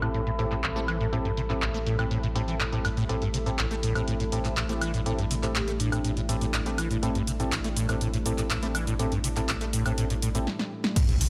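Acid house at 122 BPM in A minor, hypnotic and raw, built on a squelchy, resonant saw acid bass riff over a round sine sub bass, a punchy overdriven analog drum machine with crash, ride, hi-hat, shaker, handclaps, snare, toms and woodblock, a moody detuned pad holding an Am7 chord, hollow organ stabs through tape echo, a warbling lo-fi tape-like pad with phaser, and a brief soft-mallet vibraphone melody from 5.6 to 7.0 seconds, with sidechain pumping on the pads and basses, a drum fill from 10.5 seconds, and a dry electronic kick with a very quiet impact at 11.0 seconds.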